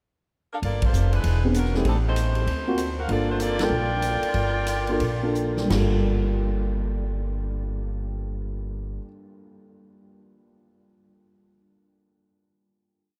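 A swinging 4/4 big band jazz piece, brassy in mood, opens on a pickup as a clear saxophone section with vibrato states a motif-based melody in four-part block voicing over a woody, growly upright bass in a two-feel and a big-band drum kit with a punchy kick keeping a ride cymbal pattern, while a warm grand piano adds syncopated, rootless comping from 1.4 seconds, with band accents at 0.8 and 3.6 seconds, a slowdown into a drum fill and a final chord held in a vast, echoing cathedral space.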